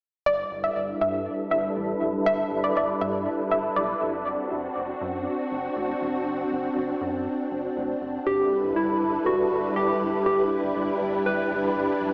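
At 0.3 seconds, a silky, dark string machine with ensemble chorus holds sustained chords over a rubbery, bouncy square bass that sits quieter in the mix, while a soft, round pluck carries a second line high up, treated with chorus, phaser and a diffuse ambient delay. This short excerpt of upbeat, bright pop moves at 120 BPM in a straight 4/4 in G major, with the harmony shifting from G6 to D7 and back to G6. A filter sweep works across the low-pass-filtered string machine through the opening part, giving its vintage tone an evolving character, and the pluck drops away at 4.1 seconds. At 8.3 seconds, a gentle, keys-like FM synth lead steps up front with a warbling, wave-folded melody, wrapped in chorus and its own ambient delay. A wet plate reverb soaks the dreamy mix, which has a small-speaker sound.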